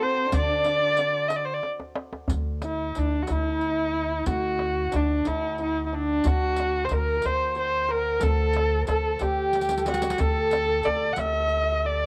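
A smooth, bowed kamancheh with light vibrato, portamento and a cassette-tape tint leads this festive, passionate excerpt of Persian modal ensemble music in a straight 6/8. A dark, woody symphonic cello section is heard only until 1.3 seconds, while a shimmering hammered santur rings in the background, a growly pizzicato upright bass holds the low end, and a deep, soft-handed tombak and a close, dry riq with bright jingles play drum fills at 1.6 and 9.5 seconds, all in a moderate studio reverb.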